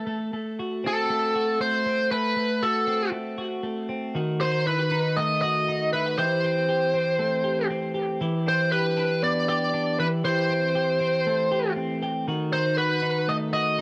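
A straight 4/4 pulse at 118 BPM drives this bittersweet, restless indie pop excerpt, cut from a longer piece, as a twangy, compressed twelve-string electric guitar picks clean arpeggios from 0.0 s. A smooth overdriven lead guitar enters at 0.9 s with a bright, up-front melody coloured by tape echo, and from 4.2 s the harmony moves through B7, Am7 and Em7. Both guitars carry a cassette tape effect, and the whole take sits in a short, wet booth ambience with a homemade cassette character.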